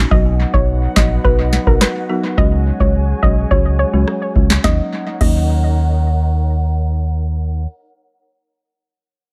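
Bouncy and hypnotic, this short dancehall excerpt moves in a straight 4/4 with an echo-heavy mix set in a small room. A booming analog drum machine sits up front with a deep kick, crisp snare, handclaps, rim clicks and crash cymbal, its tape-warm hits carrying analog delay until the drums stop at 5.4 seconds. Beside it, an organ-like FM bass with a hollow, percussive, dark tone anchors the low end until 7.7 seconds. A woody folk marimba with medium mallets plays accompaniment through sidechain pumping, a low-pass filter and analog delay, while a soft round pluck carries the melody, mellow and detuned, with chorus and delay. Behind them, a large flute ensemble holds pure, vibrato-laden chords that pump with the sidechain, and a filter sweep runs through the opening section as the harmony moves from B to Dbsus4 before settling on Ebm7 at 4.6 seconds.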